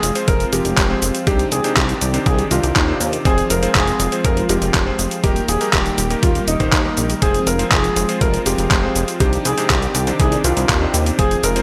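Danceable and nostalgic, this short italo disco cut moves at 121 BPM in a straight 4/4, sitting in F dorian as the harmony circles through Fm, Cmadd9 and Eb. A warm concert grand piano carries the melody between Eb4 and Bb4, its open, deep-bodied tone trailed by a digital delay, while a clear electric grand piano adds clangy, vintage stabs from 0.2 s. Underneath, a chorused synth bass blends pulse and sawtooth waves with a plucky, fast attack and a glossy, evolving character, and a lush, thick unison pad of detuned sawtooth and square waves holds bright sustained chords in the background with a slow attack and long release. Up front, a detuned 8-bit drum machine supplies cabasa, handclaps and hi-hat, overdriven and bathed in gated reverb, joined from 0.3 s by a thumpy, overdriven electronic kick that sounds re-recorded in a small room. Light reverb and digital ambience surround the whole.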